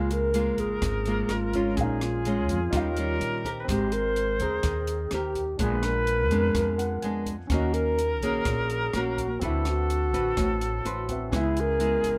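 A hollow, breathy alto flute carries the melody of this wistful, smooth bossa nova, with a distant metal jazz flute adding a second line full of chiff and expressive vibrato. Fingerpicked nylon-string guitar, with audible finger squeak, plays alongside a thumpy, woody pizzicato upright bass and a small, dark cocktail drum kit of hi-hat, tight kick and rim click. A warm grand piano with deep bass sits in the background, stepping forward with fills at 6.6 and 10.6 seconds, all captured close and dry in this short cut from a longer piece.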